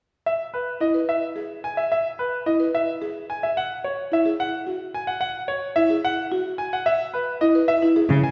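Propulsive and hypnotic, this minimalist classical pattern piece in 3/4, cut from a longer work, sets a brilliant, worn concert grand piano melody over woody, buzzing marimba arpeggios struck with medium mallets, both up front against a recital hall's reverb, before a rich, focused bowed cello sounds a single low note at 8.1 s.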